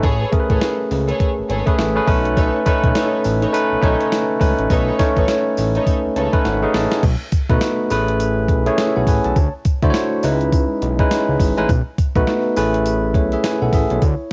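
A bouncy, confident new jack swing groove at 103 BPM with a 16th-note swing opens on a barky, bell-like tine electric piano and lush bowed string stabs that drop out at 6.4 s, over a thumpy, sampler-style 12-bit drum machine with crash, hi-hat, snare and tambourine and a fat, detuned sawtooth bass with a filter sweep, the piano adding fills before a drum fill at 6.4 s leads into a second section moving through Amaj9, Dmaj9 and C#m9, all wrapped in cassette-tape warmth and light digital ambience.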